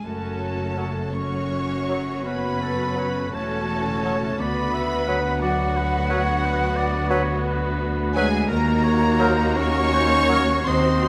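Opening together, a rich, bowed violin section carries the melody of this elegiac, solemn slow romantic movement for symphony orchestra in F# minor, a rubato 12/8 at 52-60 BPM, alongside an airy silver flute's second line, a distant second violin line, lush background violas, a mellow, close-miked French horn section holding chords and a very quiet, ringing harp in arpeggios, with intense cellos and smooth double basses joining at 0.1 s, a roomy clarinet and warm bassoon entering at 0.8 s, and an oboe's light-vibrato line arriving at 2.3 s, within a moderate scoring-stage reverb as the harmony moves from F#m through Bm/D to Ebm.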